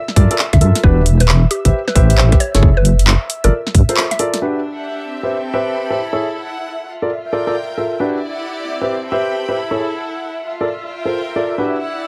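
Skippy and soulful, this cut from a longer UK garage track rides a swung two-step groove at 134 BPM in 4/4, cycling through minor ninth chords such as Gm9, Em9, Am9 and F#m9. A tight, layered electronic kick and a garage kit with a woody snare, metallic hi-hats and handclaps drive the opening, joined by a deep, wobbling sawtooth bass with chorus, sitting up front. A dark, mellow grand piano plays stabs soaked in dub echo through nearly the whole passage, while an ethereal, airy pad holds sustained chords in the background, pumping against the sidechain. Early on, a round, warbling FM mallet pluck carries the melody with chorus and delay. After a band accent and break at 4.0 seconds, the beat and bass fall away, and a clear, smooth chamber string section with vibrato enters at 4.4 seconds, also pumping, alongside the piano and pad under light reverb.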